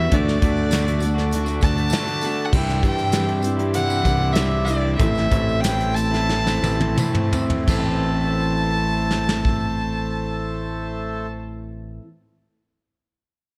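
An earthy, richly bowed fiddle with light vibrato and slapback echo carries the melody in this reflective, dusty folk- and heartland-rock fragment, over a growly, bright fingered electric bass up front, a full-bodied picked jumbo acoustic guitar and a slightly broken-up electric guitar riff with its own slapback echo, both in the background, reedy, breathing harmonium chords, a soft brush kit with dark cymbals and a punchy kick, and a very quiet jingly tambourine, as the chords move from D to Cadd9 to Am and the band slows from 2.5 s to 7.7 s, while a drum fill from 6.3 s closes out the phrase.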